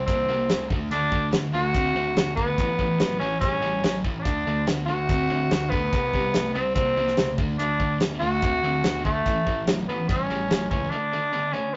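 Classic rock with a confident, sunny mood, this short excerpt from a longer piece puts a breathy, raspy tenor saxophone up front, carrying the melody over a bright, double-tracked distorted guitar riff and a fuzz-laden overdriven electric bass. A damped 70s drum kit, dry with a fat snare and tight kick, sits close in the mix while the chords move between C5, D and A. The rough rehearsal-room sound carries tube saturation, moderate studio reverb and a dull top end.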